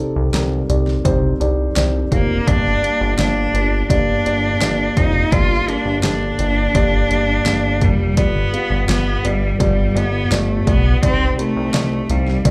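A steady, straight 4/4 groove at 84 BPM drives this bittersweet piano-led pop passage in G minor, with a punchy, overdriven deep house kit of kick, fat snare and hi-hat joining just after a glossy, nasal chorused synth bass that sits up front. A dark, felt-muted upright piano with audible action noise carries the accompaniment from the opening moment through chords moving from Cmadd9 to Gm and G7. From 2.1 seconds a single bowed cello takes the melody, focused and up front with vibrato and a slapback echo, all heard as a live club gig through the venue's PA with light room reverb.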